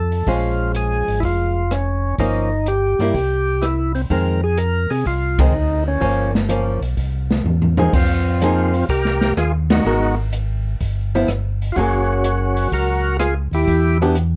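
A swung 4/4 groove at 125 BPM carries this soulful, late-night soul jazz organ trio excerpt in F minor, shifting to F phrygian at 7.9 s. A percussive tonewheel organ with key click and slow rotary speaker takes the melody, while a mellow, round second organ with chorus vibrato plays the bass line, and a clean, hollow-body archtop guitar comps alongside an acoustic drum kit with dark cymbals and a boomy kick. Band accents hit at 5.3 s and 9.6 s, a drum fill leads into the second section, and the production stays dark with light reverb.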